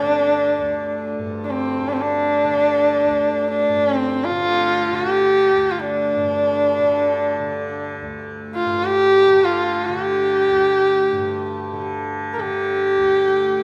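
Hindustani classical music in free time, this short excerpt cut from a longer piece has an introspective, meditative mood, with tuning set slightly below standard pitch at A4 = 437 Hz. A single bowed sarangi carries the melody up front across its 13.6 seconds, its nasal, focused tone gliding through portamento and light vibrato with a smooth top and the ring of sympathetic strings. Beneath it, a softly plucked tanpura holds a bright, buzzing, shimmering drone at a much lower level, all set in the wet reverb of a recital hall.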